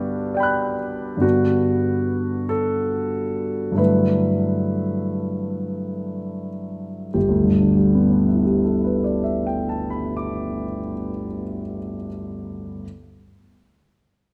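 A clear concert grand piano, natural and up front with deep bass and long sustain, plays a serene, hazy impressionist passage in G major, cut from a longer piece, at a rubato 28-48 BPM in 6/8 that slows over its first 7.1 seconds, moving from Gmaj7 through Em11/G to a closing G69 within a moderate recital hall reverb.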